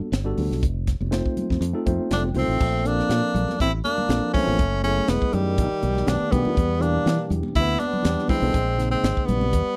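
A worn, slightly out-of-tune tine electric piano with light overdrive opens this slick, funky electric jazz fusion at 121 BPM, joined at once by a dark, round fingered electric bass, a crisp fusion drum kit with a high-tuned snare and tight kick, and distant, very quiet congas, over a light 16th-note swing. During a short electric piano fill, a bright tenor saxophone with vibrato and slapback echo takes the melody up front at 2.1 seconds, while a warm trombone plays a second line in the background. The dry, close 1970s-style studio sound carries chords such as Gmaj7, Bbmaj9 and B7alt, and the recording is cut from a longer piece.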